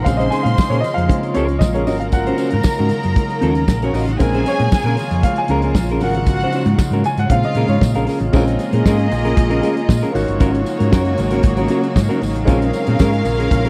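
Disco in Bb minor at 116 BPM, this sultry, driving cut from a longer piece moves in a straight 4/4 over a loop of Bbm7 and Ab9sus4 chords. A damped 70s drum kit sits up front with a fat snare, tight kick, dark cymbals and hi-hat, while a round, amped hollow-body short-scale bass plays fingered lines underneath, reaching down to G1. A clean semi-hollow electric guitar and a smooth, vintage grand piano with short sustain share the accompaniment, and the piano takes a solo from the start until 8.3 seconds. A dark, woody string section carries a bowed second line with light vibrato and a soft attack, and an icy, crystalline glass pad holds slow-attack chords in the background, colored by chorus and its own reverb. High-tuned, ringing congas and a jingly tambourine add very quiet percussion, all captured in a dry, close 1970s-style studio sound.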